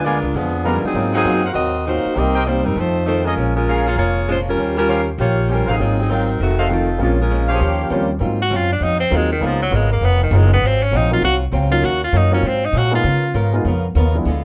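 A bright, punchy tenor saxophone bursts forward at 8.4 seconds with a forceful, vintage-toned solo over this energetic big band swing at 198 BPM in Ab mixolydian, taking over from a clear, close-miked saxophone section melody with vibrato and warm trumpet section stabs, while a growly, woody pizzicato upright bass stays up front, a natural-sounding concert grand piano comps with deep bass, and a dark, boxy picked acoustic guitar with audible finger squeak swings in the background, all set in a moderate club reverb.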